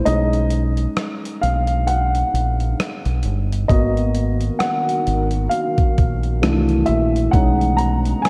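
A dark, woody upright piano opens this melancholic, hazy lo-fi hip hop excerpt at 66 BPM in 4/4, with a lazy swing on the sixteenths. The piano carries a solo through the whole passage, its mellow, vintage tone softened by a low-pass filter. Almost at once, a round, amped dub bass and a gritty, compressed sampler-style kit join in, with a thumpy kick, hi-hat and rim click. The opening stretch is treated as a break before the harmony moves from B6 to G#m9, C6 and back to B6. At 4.3 seconds a deep, moody ambient pad fades in with a slow attack, its detuned sawtooth layers thickened by chorus and its own reverb. A long plate reverb soaks the mix in a dreamy haze.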